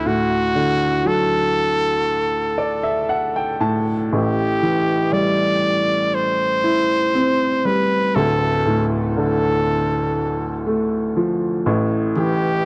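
This dry, close recording has a 1970s studio character, with little reverb around the two players. It is a melancholic, longing pop piece in A minor at a slow 60 BPM in straight 4/4, heard as a fragment cut from a longer work. A clear, punchy trumpet carries the solo melody up front, played close-miked in a pop style with light vibrato. Beneath it, a warm, woody upright piano gives natural-sounding accompaniment across a deep-to-high span and adds a fill at 2.1 s. The harmony moves from D to Am7 at 4.1 s, then through Dm to an A7 with its third omitted, while both instruments play throughout.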